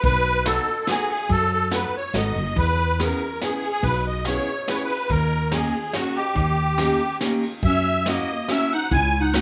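A whirling, nostalgic musette waltz at 142 BPM in 3/4 opens with a reedy, shimmering musette accordion up front over a growly, round fretless bass and a vintage brush kit with dark cymbals and a punchy kick, joined at 0.5 seconds by a fingerpicked, full-bodied steel-string acoustic guitar with finger squeak, as the chords move from B7 through E6 and D#7 to F#7 and a breathy, subtoned clarinet with light vibrato enters at 7.7 seconds, all in light reverb in this brief excerpt from a longer piece.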